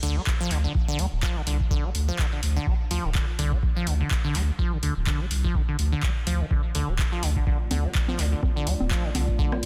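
Driving and gritty, this acid house excerpt runs at 125 BPM in 4/4 with a 56% swing on the 16ths, sitting on D minor throughout. A squelchy, resonant acid bass riff with phaser and tape echo rides over a thick, saturated sub bass with sidechain pumping and a deep electronic kick, while a tape-warm drum machine fills in congas, handclaps, hi-hat and rim click. At 7.5 seconds a moody, nasal analog pad with chorus and a slow attack slides in behind, all within a dry, dense and heavily limited mix.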